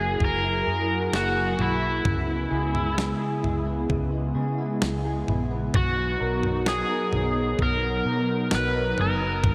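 A slow, straight 4/4 pulse at 65 BPM carries this dreamy, ethereal dream pop excerpt in B major, with a clean 12-bit drum machine entering at 0.2 seconds with a thumpy kick, fat snare and toms. Up front, an overdriven slide guitar with a bright edge sings the melody between E4 and B4, trailed by tape echo. Beneath it, a hollow, flute-like pad holds sustained chords with a slow attack and ensemble chorus, while an electric guitar through a small old amp picks twangy, slightly broken-up arpeggios coloured by analog chorus, tape echo and slapback echo. A foam-muted, round fingered bass anchors the low end as the harmony moves from F#9 to C#m7 at 2.1 seconds and settles on Bmaj7 at 5.7 seconds. A lush hall reverb gives the whole mix a big arena sound, cut from a longer piece.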